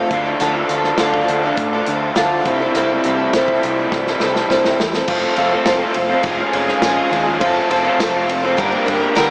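At a steady 103 BPM in a straight 4/4, this hopeful, nostalgic folk rock and heartland rock excerpt in F major moves from Dm to C6 before a drum fill at 3.9 seconds carries it into a new passage built on F, Db/F and Gm. Up front, a shimmering, octave-doubled twelve-string acoustic guitar with a subtle chorus picks the accompaniment, finger squeaks audible, alongside a double-tracked, lo-fi garage guitar whose overdriven riff sounds raw and warm. Underneath, a dark, round, amped electric bass holds the low end while a natural country drum kit with a tight kick and medium-tuned snare rides on hi-hat, ride and crash cymbals. A very quiet tonewheel organ, shouting and full through a slow rotary speaker with key click, enters at 0.4 seconds to sustain chords, and a jingly, vintage tambourine joins at 5.7 seconds. The whole mix is soaked in a huge ambient reverb that gives it a dreamy haze, yet it also sounds as if played through a small speaker.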